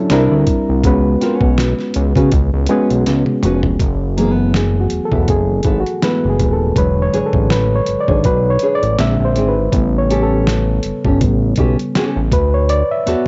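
A reedy electric piano, clean and heard through its built-in speakers, sits up front in this soulful, sultry neo-soul R&B excerpt, comping at first and then taking a solo from 3.8 seconds through to the end. Underneath, a fat analog bass gives a thick, detuned sawtooth-and-triangle tone with wave-folding, a filter sweep, a fast attack and transformer saturation, holding notes sustained at the front of the mix. A dark, fingerpicked nylon-string guitar adds a classical second line, with the occasional finger squeak. The dusty, sampler-style drum kit is gritty and compressed, with a thumpy kick, a fat snare, hi-hat and toms, all overdriven and run through cassette tape, and a fill at 3.1 seconds leads into the solo. At a relaxed 81 BPM in F# minor with a light sixteenth-note swing, the harmony moves through rich chords like F#m11, E13 and A#9, and the dry, lo-fi cassette sound of a home recording keeps the top end dull and close.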